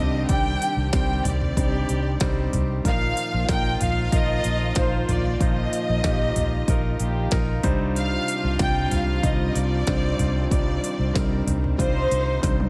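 Bittersweet and earnest, this piano-driven pop excerpt moves at 94 BPM in a straight 4/4 in C minor, cut from a longer piece. A lush, bowed violin section carries the melody with smooth vibrato, while a concert grand piano supplies the accompaniment with deep bass, long sustain and audible action noise that makes it feel intimate. Beneath them, a veiled con sordino string section holds very quiet sustained chords, and a stopped French horn section adds a nasal, metallic second line in the background. A foam-muted fingered electric bass gives a dark, round and punchy low end, and an electronic drum kit enters at 0.3 seconds with a deep kick, tiny snare and clicky hats, closing with a drum fill at 12.4 seconds. The harmony moves from Cmadd9 to Bbsus4 and back to Cmadd9, all set in a small room ambience.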